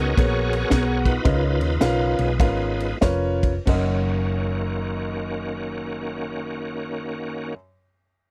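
Swung eighth notes in 4/4 drive this jubilant, hopeful uptempo gospel fragment, which slows down over its first 3.7 seconds while a bright, shouting tonewheel organ solos on sustained chords through fast rotary speaker, light overdrive and chorus vibrato. A woody, long-sustaining upright piano and a dark, round hollow-body electric bass accompany over G#m9 and C#13 before settling on F#6, and a tight funk kit with a high-tuned snare, crash, ride and kick plays up front from 0.2 to 3.9 seconds. The dry, close studio sound carries a 1970s character with little reverb.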